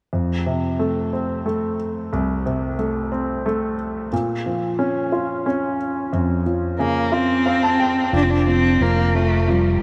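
A swaying six-eight lilt carries this tender pop ballad fragment, where a clear, intimate grand piano with audible action noise and a subtle chorus accompanies from the start and adds a fill, a warm, focused, bowed cello with vibrato and tape echo takes the melody at 6.8 s, and a round, punchy fingered electric bass enters at 8.1 s, inside a dreamy mix soaked in huge ambient reverb.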